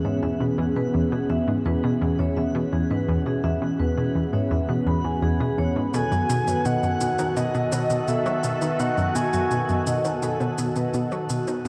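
Expansive and cosmic, this excerpt of sequencer-driven ambient space music at 84 BPM sets a round, nasal analog pluck riff up front under a detuned, warbling resonant pad holding E6 and B7 chords, metallic ringing vibraphone arpeggios with medium mallets, and a sparkling granular texture fading in from the background, before a breathy flute-like synth lead with vibrato and overdriven electronic cabasa and woodblock enter at 5.9 s, all within a vast cathedral space until the fade-out from 9.8 s.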